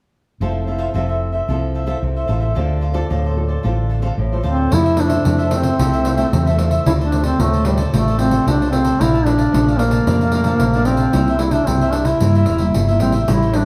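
Sunny and joyful, this samba-choro excerpt sets a bright, crisply picked cavaquinho and thumb-plucked classical nylon-string guitar over a dark, round, punchy hollow-body electric bass up front, before a folk-style duduk enters at 4.5 seconds with soft-attack vibrato and a jingly pandeiro joins at 4.7 seconds, all heard from further back in a large, reverberant studio.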